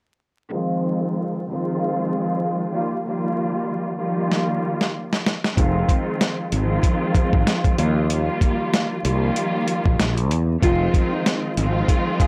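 A lush, bowed string section with a smooth top and expressive vibrato opens this gritty, moody boom-bap hip-hop excerpt in F minor at 95 BPM, filtered through a cassette-tape haze with a filter sweep until 10.6 seconds, joined at 4.3 seconds by a compressed, sampler-style drum kit with a thumpy kick and a fill, then a bright, growly fretless electric bass at 5.6 seconds, before a full-bodied, fingerpicked nylon-string guitar melody with finger squeak arrives at 10.6 seconds over a dry, gritty hardware sound with vinyl crackle and light reverb, all cycling between Fm7 and Ebadd9.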